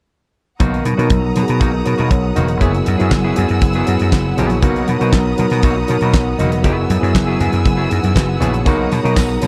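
A dark, warm production with light reverb and studio ambience frames this glamorous, joyful disco excerpt, built on a dry, damped 70s kit with fat snare, tight kick, hi-hat and handclaps, and a round, punchy vintage slap bass, both sitting up front. A worn, slightly out-of-tune tine electric piano and a bright, picked semi-hollow guitar with spring reverb carry the accompaniment over alternating Bmaj7 and F#9sus4 chords, while a lush, bowed string section holds smooth sustained chords with vibrato and very quiet, thin-skinned congas add color. A jingly tambourine slips in from the background at 8.7 s.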